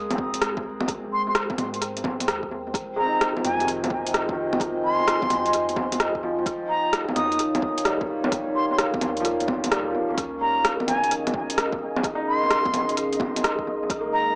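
Wistful and melancholic, this future garage excerpt with swung 16ths sets a distant, vibrato-laden silver flute over a moody, detuned analog pad with chorus, a felt-muted upright piano gritty with vintage sampler crunch and tape echo, a round, soft 808-style bass in the background, an overdriven deep house kit with metallic hats, bongos and rim clicks up front, and a deep electronic kick that drops out from 9.7 to 10.2 seconds, before a breathy, wind-like tuned noise texture drifts in at 11.0 seconds, all washed in a wet spring reverb and echo-heavy, small-speaker sound.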